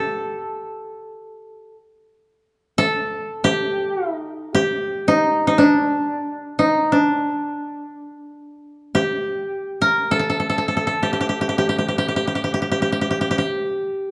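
In free, unmetered time, a single koto plays alone through this 14.1-second fragment of traditional Japanese chamber music, its austere, solitary mood drawn from a compact middle register. Plucked with fingerpicks, the instrument sounds woody and dry, sitting up front in a dark production with a moderate recital-hall reverb around it.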